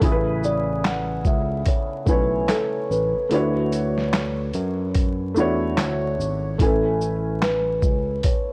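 A dry, gritty recording dusted with vinyl crackle frames this dreamy, cosy lo-fi hip hop excerpt at 73 BPM in A major, swung on the sixteenths. A compressed, pitched-down boom bap kit with a thumpy kick, snare, hi-hat, shaker and handclaps sits up front beside a barky, lightly overdriven tine electric piano playing the bass. A felt-muted upright piano, soft and intimate under cassette tape colouring and a low-pass filter, supplies the accompaniment over Amaj7 and Dmaj7, and from 0.4 s a woody, fingertip-plucked kalimba, also low-pass filtered, sings the ringing melody.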